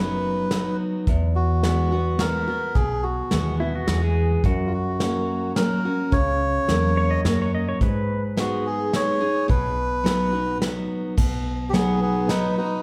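Nostalgic and heartfelt, this honky-tonk and classic country passage in B major at 107 BPM in 3/4 sets a reedy, breathy, up-front melodica melody over a bright, full-bodied picked dreadnought acoustic guitar, a dark, round, foam-muted vintage electric bass and a soft brush drum kit that enters at 0.5 s, while a twangy, clean pedal steel guitar played with fingerpicks adds a second line with volume swells and slide from 3.6 s to 8.2 s, before the melodica takes a short solo at 11.2 s, the whole cut from a longer piece and heard from further back in a wet, large studio reverb.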